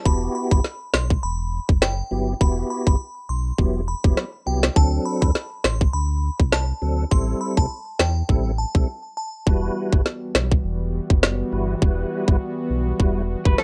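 Tight, woody electronic island pop drums drive this bouncy, hypnotic dancehall excerpt from a rough home demo, over a deep sine sub bass with octave and a clean tonewheel organ with key click, chorus vibrato and slow rotary speaker, while a glassy FM synth bell with chorus and digital delay carries the melody until 9.3 s, a detuned sawtooth analog pad with tremolo and sidechain pumping enters at 9.5 s after a short break, and a twangy, slightly broken-up electric guitar with phaser plays arpeggios at 13.5 s.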